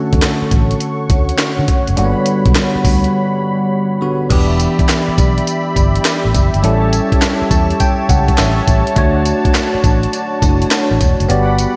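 A swung sixteenth-note groove at 103 BPM in 4/4 drives this confident, bouncy new jack swing cut from a longer R&B piece, built on an up-front, gritty sampler-style breakbeat kit with a thumpy kick, high-tuned snare, handclaps, hi-hat, tambourine and crash, under a round, foam-muted fingered electric bass and a barely audible crisp group handclap. A bell-like tine electric piano with phaser plays accompaniment and takes a fill from 7.2 to 9.0 seconds, while a brassy, detuned sawtooth analog pad with chorus holds soft-attack chords through Dmaj7, Gmaj7, Em7 and A7, with a break from 3.1 seconds before the second section arrives at 4.3. A lush digital hall reverb gives the mix a big arena sound.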